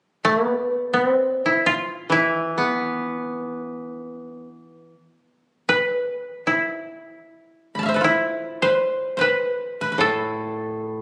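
This is Japanese traditional chamber music for three koto, calm and austere, unfolding in free time in E miyako bushi. A mellow, fingerpicked koto carries the melody from the opening, sitting up front with a dry, woody tone, and a lower koto enters at 2.1 seconds to provide a warm accompaniment beneath it. The music moves into a new section at 7.2 seconds, and a third koto adds a higher second line at 7.8 seconds, so the texture thickens to three plucked voices for the final stretch. The instruments sit in a moderate scoring-stage reverb with a 1.6-second decay and some studio ambience, but the sound is compressed and captured on a phone in the room, leaving audible lossy artefacts. The fragment is cut from a longer piece.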